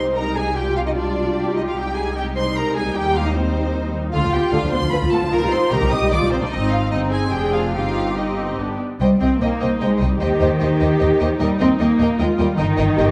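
In a quick 3/4 at 151 BPM with a straight feel, this cheerful, spirited classical-period movement for string orchestra moves through C minor across roughly 13 seconds cut from a longer piece. The first violins carry the melody high above the ensemble with a lush, rich vibrato and soft attack, while the second violins trace a focused, smooth-topped second line beneath them. Violas fill in a smooth, even accompaniment, and cellos and double basses share the bass, the cellos focused and the basses sitting up front with a lush, bowed weight. The harmony opens on C minor and leans toward G before the section changes at 9.0 seconds, when the music turns toward E-flat. A moderate scoring-stage reverb and a dark production wrap the whole orchestra in a soft, resonant space.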